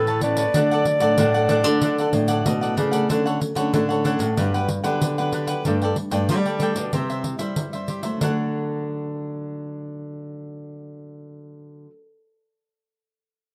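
This rough home demo has a light reverb, and it is cut from a longer piece of joyful, sunny samba and choro at 94 BPM in a straight 4/4, centred on D major. A mellow clarinet sings the melody in a classical style, but only for the opening 2.7 seconds before it drops away. A crisp, picked cavaquinho sits up front and carries the accompaniment throughout, and a fingerpicked nylon-string guitar with fresh strings adds classical chording alongside it. A second, smaller nylon-string guitar holds down the bass line, and finger squeaks can be heard on both guitars. A jingly pandeiro played close with soft hands keeps the pulse until 8.4 seconds, while the harmony moves from D through Dmaj7 and Gmaj7 to a C chord before settling back on Dmaj7.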